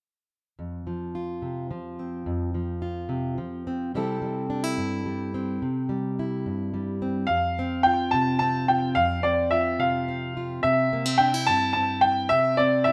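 Folk in 6/8, nostalgic and hopeful, cut from a longer piece and captured as a rough home demo in a small room. A fingerpicked, plugged-in steel-string acoustic guitar with a jumbo, full-bodied tone carries the accompaniment up front from 0.6 seconds. At 7.3 seconds a bright, woody upright piano enters with the melody, its long sustain trailed by a slapback echo, and sits louder than the guitar through to 12.9 seconds.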